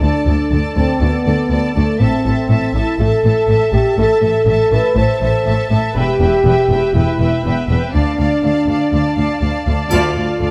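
In a straight 4/4, this dark, heroic fragment of an epic orchestral film score sets a warm, vibrato-laden violin melody over a second violin line with a soft attack, while intense violas fill the accompaniment. Up-front mellow French horns hold sustained chords over a bowed low end of distant cellos and smooth, rich double basses, all in light reverb. At 9.9 s the ensemble lands a shared accent as a bright, close and dry triangle enters quietly in the background.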